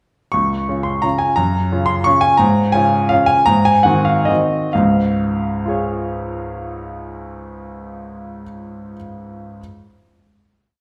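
Heard from further back in a recital hall, the recording carries a generous, wet reverb that lets each note bloom and fade. This is a complete short classical piano waltz in 3/4, graceful and sparkling, played with a free, rubato feel. A clear grand piano plays alone from 0.3 seconds, spanning Db2 to Db6, with a polished, intimate tone, long sustain and audible action noise. A single-line melody floats over a waltz bass, moving from the home chord through Gbmaj7 and Db/Ab to Ab7. The pace slows from 1.9 seconds before the piece settles on a final chord at 4.8 seconds, which rings on in the hall.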